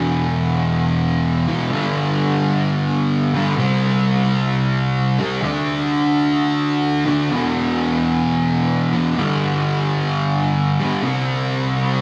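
A dark, fuzzy electric guitar plays alone from 0.0 to 12.0 seconds in this hazy, dreamy rock fragment at 129 BPM in C major. The guitar is picked, double-tracked and compressed, sitting up front with distortion and a lush chorus, and it moves through E5, G5, C5 and D5 power chords in its low-to-middle range. A huge, wet ambient reverb with a 4.2-second tail drenches the sound, adding to its drifting, dreamlike atmosphere.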